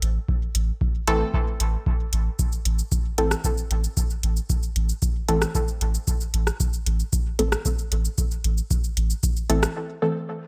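Hypnotic and deep, this dub techno excerpt rides a round, soft sub bass with sidechain pumping under an up-front analog kick re-recorded in a large room, overdriven deep house drums with metallic hats, cabasa and rim click, and muted sawtooth chord stabs swept by a filter and colored with chorus, phaser, cassette tape and dub echo, before a brief break at 9.8 seconds in a dry mix.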